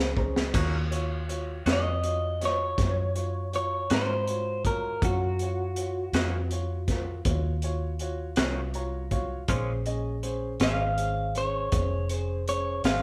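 A slow blues in 12/8 at 54 BPM, counted in dotted quarters, with a straight, brooding and smoky feel in this short section cut from a longer piece. A crunchy breakbeat drum kit enters at 0.2 seconds with a fill, its high-tuned snare, tight kick and dark cymbals sounding gritty and saturated with a rolled-off top, while a vintage foam-muted fingered electric bass sits up front, round and punchy, in a low register. A dark, boxy grand piano accompanies from the start, adding fills at the opening and again from 8.4 to 9.5 seconds, and a clean, hollow-bodied semi-hollow electric guitar enters at 0.5 seconds, its picked tone colored by harmonic tremolo. At 1.7 seconds a twangy, compressed electric guitar at the edge of break-up takes the melody up front, its fingered lines bathed in spring reverb. The harmony rests on Bbm7, moves to Ebm7, and returns to Bbm7 at 9.5 seconds, all heard as a band playing live in one large studio room with a moderate reverb.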